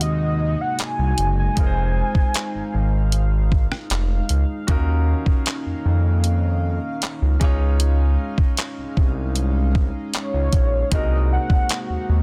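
Longing and late-night, this contemporary R&B fragment moves at a slow 77 BPM in straight 4/4, its chords drifting from Ab9/C through Fm7, Ebm9 and Dbmaj9 before returning. A velvety, detuned synth lead with chorus, vibrato and tape echo sings the melody at the start and again from 10.2 seconds, over a clear grand piano, a shimmering, dark pulse-width pad and a smooth sawtooth synth bass placed up front. A thumpy, tape-warm, detuned 8-bit drum machine supplies handclaps, hi-hat, kick drum and rim click, all in a dry, dense, heavily limited modern master.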